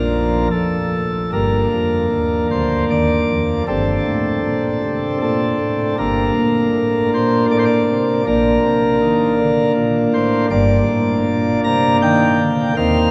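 Classical chorale-style music for solo chamber organ, majestic and reverent, moving at 79 BPM in 3/4 with a flexible rubato feel in G minor. The principal chorus sounds full and up front, each note starting with a distinct chiff and spanning low G1 to Bb5, while a dark production and cavernous cathedral reverb with a 6.4-second decay let every chord hang in the air. A brief Bb opening gives way at 1.3 seconds to G minor, and the passage blooms into Bbmaj9 at 8.3 seconds before settling back on G minor as this fragment of a longer piece breaks off.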